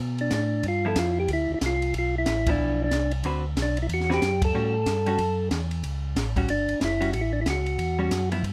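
A round organ bass line with chorus vibrato and slow rotary speaker opens this swinging, greasy soul jazz organ trio excerpt at 185 BPM, joined at 0.2 s by a percussive, third-harmonic tonewheel organ melody through plate reverb and a dark cocktail kit with high-tuned snare and punchy kick, then at 0.8 s by a clean, compressed, picked hollow-body guitar comping over chords moving from D5 through G13, D13 and A13, with band accents at 2.4 and 4.4 seconds, all captured by close, detailed microphones with light reverb.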